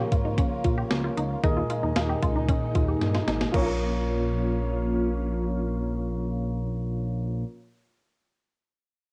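A clean 12-bit digital drum machine stands out most in this short, driving synth-pop excerpt in Bb minor at 114 BPM. Its thumpy kick, medium-tuned snare, hi-hat and crash sit up front with a cassette-tape grit and a large-room character before dropping out at 3.7 seconds. Beneath it, a smooth, dark synth bass built from sawtooth and square waves holds the low end, evolving and sustained. A juicy, squelchy resonant blip pluck runs arpeggios through phaser, tape echo and plate reverb, while a vintage, organ-like ensemble string pad holds sustained chords with a soft attack and a moving notch. Soft, round electric-piano-like keys add mellow accompaniment in the upper register, and a filter sweep spans the opening 3.5 seconds as a drum fill closes that stretch, all lending the home-cassette recording a nocturnal glow.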